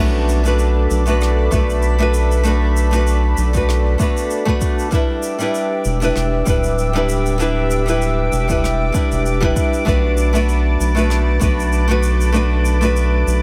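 Wistful and relaxed, this sunset chillout excerpt drifts along at 97 BPM in 4/4 with a light swing on the sixteenths, set in B minor and moving from Bm7 to Em7 at 4.9 seconds and back to Bm7 at 9.9 seconds. A fingerpicked nylon-string guitar sits up front as accompaniment, its small, intimate tone trailed by tape echo. Underneath, a round analog bass holds the low end with a dark, deep presence, while a lush unison pad sustains thick, detuned chords high above, warbling through chorus and roughened by vintage 12-bit sampler grit. Soft shaker and rim click enter at 0.3 seconds with a brushed, acoustic small-room feel, and an overdriven electronic kick drum joins at 1.5 seconds, stopping at 11.6 seconds. Light reverb and small room ambience give the whole piece an unhurried, close-up atmosphere.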